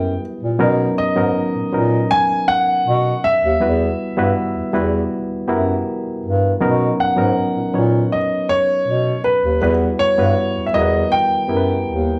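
The recording has the roomy feel of a band playing live together in a large studio, with a moderate reverb that gives every note a soft halo. This is a short excerpt of lush 1970s-style soul in B major, moving at an unhurried 80 BPM in a straight 4/4, with a warm, romantic mood. A concert grand piano carries the melody from start to finish, sounding intimate and natural, with long sustain, deep bass and the faint mechanical noise of its action audible up close. Beneath it, a reedy electric piano plays the accompaniment, bright and barky, lightly overdriven and heard through its built-in speakers. A mellow bass clarinet holds down the bass line in a jazz style, its soft attack, light vibrato and scooped notes giving it a distant yet present quality. The harmony sways between Emadd9 and Bmaj9 throughout the 12.2 seconds.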